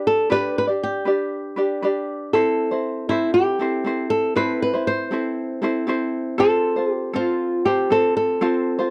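A dark flamenco guitar melody and a light tenor ukulele accompaniment, both fingerpicked, acoustic and up front, open this sunny, easy-going pop fragment together, moving from G to Am at 2.3 seconds and F at 6.4 seconds in a dry, close 1970s-style studio sound with a touch of reverb.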